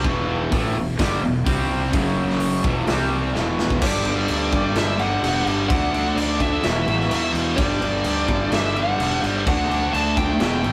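A straight 4/4 pulse at 128 BPM drives this menacing, aggressive hard rock fragment, cut from a longer piece, with a raw garage drum kit sitting up front: punchy kick, medium-tuned snare, hi-hat and crash in a gritty, saturated stone-room sound, with a drum fill from 3.3 to 3.8 seconds. Under it, a fuzz fingered electric bass growls with overdrive. Riffs come from a cranked stack guitar with a bright overdriven bite and a double-tracked distorted electric guitar, while a second, scooped and compressed distorted guitar sits in the background until it drops out at 3.8 seconds. At that point the second section begins and a dark, bluesy overdriven lead guitar takes the melody high above the riffs, its distortion trailed by tape echo. The chords move from E minor through power-chord shifts on C, F#, E and G, then settle into a G, D and E cycle. The whole track has the rough feel of a rehearsal room, with a moderate small-room ambience and warm saturation.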